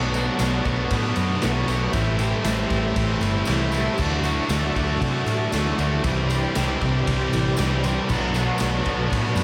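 Opening on a very quiet, mellow string-machine cello pad, a faint bright clean guitar arpeggio, an up-front biting overdriven riff with reverse reverb, a dark fuzz riff thickened by lush chorus and a round, foam-muted bass, this blissful, wistful shoegaze and dream-pop rock excerpt at 117 BPM is joined at 0.1 seconds by a gritty, saturated garage drum kit with a punchy kick and a jingly tambourine tucked in the background, all cycling through Bm7, Am7, Dadd9 and Cadd9 in a dreamy mix soaked in hall reverb.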